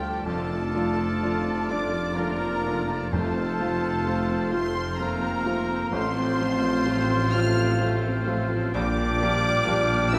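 A present grand piano carries the melody with short sustain in this lush, lyrical romantic movement for piano and orchestra, which moves at a rubato 64 BPM in 3/4 and is cut from a longer piece. A focused, vibrato-rich violin section also sings a melody high above, while a second, very quiet violin line, a clear oboe, a mellow, distant clarinet and an airy flute group add second lines over bowed violas with portamento, a dark French horn section, a bright, very quiet trombone section and vintage trumpet stabs. Tuba, double basses and a soft-attack cello section anchor the bass through Dm/F, F, F/A and Gm7/Bb, timpani with calf heads sound briefly from 3.1 to 4.5 s, and a wet scoring-stage reverb surrounds the ensemble.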